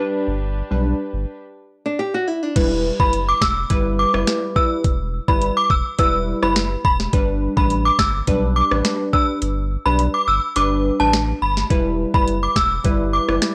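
A straight 4/4 dancehall groove at 105 BPM in E minor, hypnotic and sultry and cut from a longer piece, rides an electronic afro-pop kit from 2.6 s, with a knocking kick, sharp snare, metallic hats, finger snaps, rim clicks and crash roughened by vintage 12-bit sampler grit; the kick drops out for a stretch before returning. Beneath it a round sine sub bass anchors the G and E minor harmony, while a glassy, detuned wavetable pluck accompanies through chorus and a low-pass filter, opening over a filter sweep beside a brief bowed chamber string chord with gut-string tone and sidechain pumping, and a bright, fingerpicked nylon-string guitar arpeggio flickers in just before the beat. From 3.0 s an inharmonic FM chime carries the melody up front, ringing through ensemble chorus, tremolo and analog delay, and the mix sits in a dry, gritty cassette-tape recording with digital ambience.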